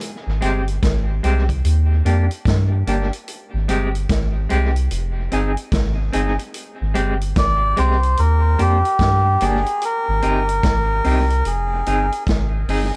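This dry, close-sounding excerpt of roots reggae unfolds at a laid-back, uplifting pace with a swung sixteenth-note feel, cycling through Abmaj7, Ebmaj7 and Fm7 chords. A vintage acoustic drum kit with a punchy kick, medium-tuned snare and hi-hat carries a rolled-off top and a touch of tape echo, sitting back in the mix. Up front, a soft dub sub bass lays down deep, round tones with a fast attack and long sustain. A clean, picked electric guitar adds accompaniment colored by tremolo and tape echo. At 7.4 seconds a reedy, breathy melodica steps forward with the melody, its nasal, wooden character trailed by tape echo until 12.2 seconds.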